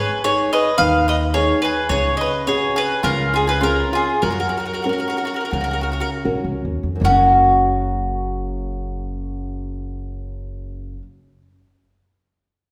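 Italian folk serenade in F# major, lively and sunny, moving at 75-108 BPM in a straight 4/4 and slowing down between 1.9 and 7.0 seconds as the harmony passes from G#m through C#sus4 and C# to F#. A round, up-front picked mandolin carries the melody over a bright bowl-back mandolin second line and small fingerpicked nylon-string guitar accompaniment, with a woody, thumpy pizzicato upright bass entering at 0.8 seconds. The playing sits in a church or concert hall with a wet, reverberant stage sound, and this short cut from a longer piece moves into a new section at 7.0 seconds.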